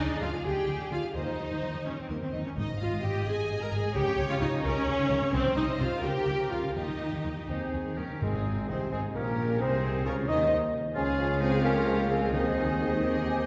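Cheerful and graceful yet dramatic, this fast romantic orchestral movement in a rubato 6/8 opens with lush, vibrato-rich violins carrying the melody over a second violin line, expressive violas, dark horns, a smooth cello and double bass foundation and very quiet hard-mallet timpani. At 7.5 seconds a dark clarinet and an oboe slip in, and at 8.2 seconds the full orchestra blooms as an airy flute ensemble, a bassoon, soft trombones, distant trumpet stabs and a clear tuba join, all heard from further back in a reverberant concert hall.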